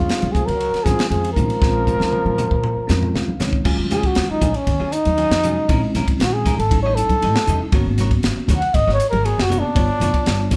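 A breathy, intimate trumpet leads this driving, slick electric jazz fusion excerpt at 118 BPM in Bb minor, over bell-like tine electric piano, woody pizzicato upright bass, a crisp, up-front drum kit with a high-tuned snare, and soft-handed congas, while a plunger-muted trombone adds a wah-wah second line until 3.4 s and, after a drum fill, the trumpet takes a solo from 3.7 s as the harmony shifts to Eb minor and a clean, picked electric guitar adds stabs in the background.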